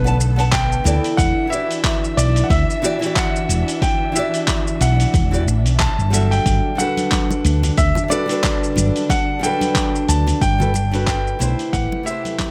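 Relaxed sunset chillout at 91 BPM in G major with a gentle 16th-note swing, where an intimate concert grand piano carries the melody through digital delay over fingerpicked nylon-string guitar, veiled con sordino strings in the background and a round, up-front fretless bass with subtle chorus, while a gritty, tape-warm sampler-style kit of handclaps, hi-hat and shaker is joined by a punchy electronic kick from 0.5 seconds, bright, dry congas enter at 6.8 seconds, and the passage, cut from a longer piece, fades out from 10.0 seconds under light small-room reverb.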